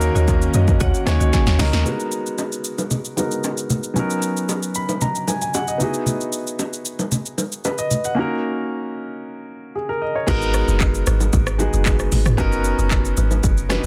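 Hypnotic and late-night, this amapiano passage at 114 BPM in G# minor opens with a hollow, flute-like pad and woody marimba stabs carrying tape echo, both ending at 1.8 s, beside a deep, round log drum bass that drops away and returns at 10.3 s, while an intimate grand piano with audible action noise plays minor and major-ninth chords and fills over a punchy, layered electronic house kit with metallic hats and bright, vintage bongos and congas, in a dense, heavily limited mix with little reverb.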